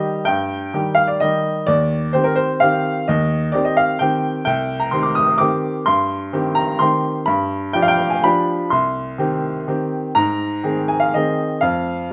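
A bright, woody upright piano plays alone and sits up front, carrying this 12.1-second fragment of a longer classical waltz. The mood is nostalgic and wistful, in C minor and 3/4, with a rubato feel that lets the tempo drift between 117 and 135 BPM. The piano's vintage character comes through across a span from C2 to Eb6, tuned slightly low to A4 = 438 Hz. The harmony opens on a rootless C minor, moves through G7 at 7.3 seconds and back to C minor, then touches Ab before falling away from any chord at 11.6 seconds. A light reverb gives the solo piano a modest sense of space.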